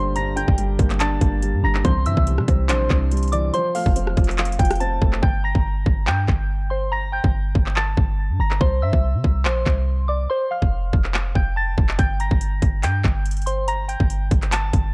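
Dry, dark and warm, this hard-hitting, eerie trap excerpt in G dorian runs at 142 BPM with a half-time feel, with a soft, pure FM synth bell carrying the melody through chorus and phaser, a dark grand piano accompanying until 5.2 s, a deep, boomy 808-style bass, an overdriven trap kit of hard-clipped kick, metallic hi-hats, handclaps and rim clicks whose hats fall silent from 5.2 to 12.0 s, and a very quiet, woody bowed string section adding a brief stab at 1.8 s.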